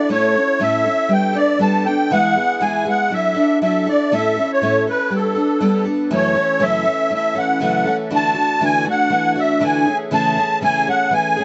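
A warm, open-road feeling runs through this short rock excerpt, cut from a longer piece and set in A major at 120 BPM in a straight 4/4. A musette accordion carries the melody from start to finish, its reedy, wet-tuned voice dark and smooth as it moves between A4 and A5. Beneath it, a picked twelve-string acoustic guitar plays the accompaniment throughout, octave-doubled and shimmering, with a finger squeak and an auditorium-like body to its tone. Both parts sit up front, wrapped in light reverb with a rounded top end. The opening section cycles through A, Gadd9, E and Dadd9/F#, then at 6.1 seconds the harmony turns toward F#m7, Dadd9 and finally Amaj7/C# at 9.9 seconds.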